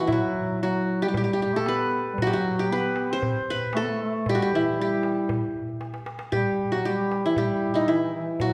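A reverberant recital hall frames this short excerpt, heard from further back in the room, with a 1.4-second tail that lends the music a spacious, hazy glow. The piece is an Arabic maqam ensemble in E minor at 116 BPM in a straight 4/4, tuned to A4 = 443 Hz, and its mood is hypnotic and full of longing. Up front, the qanun carries the melody between D#4 and C5, its fingerpicked triple strings sounding bright-edged and warm. Beneath it, a breathy bass clarinet plays a jazz-style second line from E3 to C4, colored with vibrato. A metal-shell darbuka, close and dry, adds crisp percussion struck with hard hands and breaks into a fill from 5.8 to 6.3 seconds.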